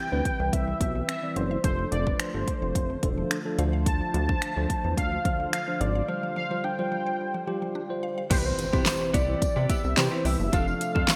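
A straight 4/4 dance-pop groove at 108 BPM in C major carries a carefree, euphoric mood, with a punchy, overdriven pop drum kit of fat snare, metallic hats, snaps, claps and crash under gated reverb, a glossy chorused synth bass, a tine electric piano and a shimmering pulse-width pad both pumping to the sidechain, a very quiet woody mallet-like synth pluck playing arpeggios until 8.3 seconds, and a velvety, detuned synth lead with vibrato, chorus and digital delay singing the melody up front over Cmaj7, F6, Dm7 and G7sus4. A break from 6.1 seconds gives way at 8.3 seconds to a scooped, direct-recorded clean electric guitar riff with analog chorus and a jingly tambourine, joined shortly after by a faint electronic impact, all set in a lush hall within a bright 1980s-style digital production in this cut from a longer piece.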